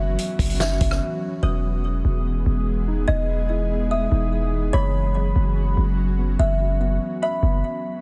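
A dense, heavily limited and dry-sounding mix carries this dreamy, floating half-time cloud-rap fragment, where a woody kalimba melody with digital delay rings over an ethereal, detuned pad with ensemble chorus and sidechain pumping and a deep, boomy 808-style bass, while a punchy vintage acoustic drum kit plays only briefly from 0.2 s before dark, muted felt-like synth key arpeggios with chorus and delay enter at 1.4 s, and the pad and bass stop at 7.6 s.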